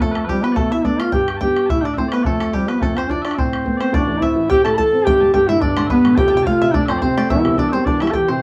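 Celtic reel in a driving, spirited swing, where a mellow duduk carries the melody up front with vibrato and scooped notes, backed by sweet, continuous small bagpipes and a twangy, fingerpicked banjo as second lines, a woody, boxy upright piano with short sustain and a boomy, band-limited bodhran, all heard from further back in a wet small room across this short cut from a longer piece.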